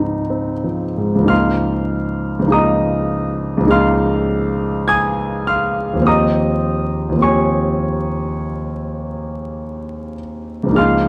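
A luminous, dreamy haze of recital hall reverb surrounds this recording, with a vinyl crackle beneath it. A single concert grand piano carries this impressionist classical solo from the first moment to 11.1 seconds, its voice clear, intimate and polished, sitting up front in the room. The instrument spans from deep bass notes up into a high upper register, and its long sustain lets each chord ring out into the hall while an audible trace of action noise keeps the player close at hand. The pulse moves freely in rubato, unhurried and reflective. Rich extended harmonies drift from a lush opening chord to a gentle sixth-and-ninth colouring at 1.3 seconds and then to a shimmering thirteenth chord at 6.1 seconds, leaving the sense of a brief window into a longer piece.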